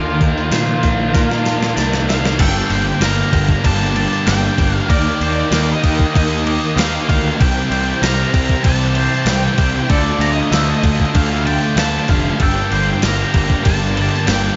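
A gated 80s digital drum machine drives a straight 4/4 pulse with a thumpy kick and gated-reverb snare, tape-colored and up front, with a fill from 1.2 to 2.4 seconds before the section shifts, while a very quiet jingly tambourine rides close and dry and a punchy fuzz picked bass growls underneath. In this hazy, brooding shoegaze and dream pop cut, an overdriven electric guitar and a thick, dark fuzz guitar share the low riff, the first trailing reverse reverb and the second sitting in the background with subtle chorus. Above them, a distorted octave-fuzz lead carries the melody through analog delay, a twangy clean guitar spins arpeggios in lush chorus, and a faint vintage sawtooth string machine of violas holds slow-swelling chords over a progression from Ebsus2 through Gmadd9, Ebmaj7, C and Dm, all in a dry, dark-toned mix.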